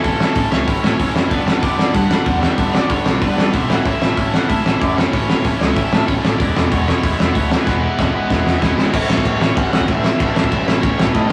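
Upbeat and rebellious, this short punk rock cut from a longer piece charges along at 189 BPM in A major, moving through A, G and E chords. A double-tracked, bright overdriven electric guitar riff and a growling, picked overdriven bass sit over a loose indie drum kit that sounds muffled and gritty, with dark cymbals, a fat snare, a tight kick and a drum fill from 7.7 to 8.9 seconds, while a cranked stack guitar carries a picked overdriven melody further back in the mix. The whole track has the rough, saturated feel of a rehearsal-room recording, with small room ambience and light reverb, and the new section at 8.9 seconds returns to A.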